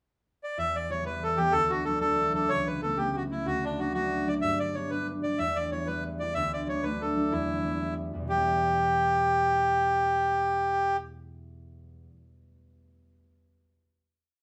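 The reedy, single-reed accordion carries the melody of this short Celtic jig, its dry tuning sounding clear and airy up front as it builds motif-based phrases shaped like sentences. It enters at 0.4 s with a brief pickup before the concert harp joins at 0.6 s, thumb-plucked and ringing, laying down bass notes and chord figures that keep a steady pulse. The mood is dark yet lively and driving, set in a straight 6/8 lilt. The harmony moves from Em through Dadd9, Aadd9/C# and D to G before circling back through Em and D to Em. The accordion stops at 11.0 s, and the harp lets the final chord ring until 12.2 s. Moderate studio reverb gives the pair a modest sense of room while both stay close and present.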